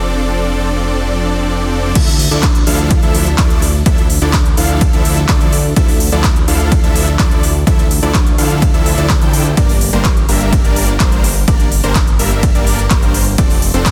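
Emotional and powerful, this festival progressive house excerpt in D minor drives at 126 BPM in a straight 4/4. It opens with huge, lush, detuned supersaw chords on F6 over a fat, thick, saturated analog bass, both pumping with sidechain and sustaining from sharp attacks, while delay trails the bright chord riff. At 2.0 seconds the drop lands: a punchy, overdriven electronic kick sits up front, joined by a layered big-room kit of crisp hi-hats, handclaps, crash and ride cymbals, also overdriven. The harmony moves from Dmadd9 to Gm at 9.6 seconds before returning to F6. The mix is dry, with little reverb, and the master is dense and heavily limited in a modern style.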